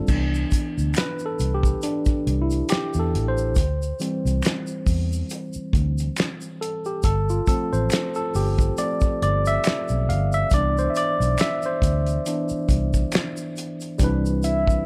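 This R&B and neo-soul piece has a relaxed, warm mood and an unhurried, swung sixteenth-note feel. A worn, slightly out-of-tune tine electric piano carries the piece as a clean, up-front solo from 0.1 to 14.0 seconds, moving through Cmaj9, D7sus4, G9sus4 and back to Cmaj9. Beneath it, a vintage muted fingered electric bass sits low with a round, punchy, foam-muted tone. A cloth-damped, thuddy drum kit in a small room adds a fat snare, tight kick, dark cymbals and finger snaps, while a compressed, saturated tube shaker and finger snaps sit softly in the background. Just before the close, at 14.4 seconds, a soft octave-layered synth lead appears briefly on a single full, round note with chorus and vibrato, all within dark studio ambience that ends mid-phrase.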